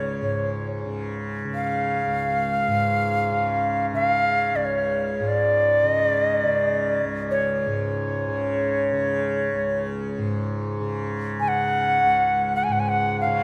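Floating in free time, this meditative, spacious world piece, cut from a longer work, sets an airy, tongued cedar flute melody, up front and expressive with a straight tone bathed in shimmer reverb and tape echo, over a softly plucked, buzzing tanpura drone that glimmers low beneath it throughout its 13.4 seconds, all within the deep wash of a church-like room.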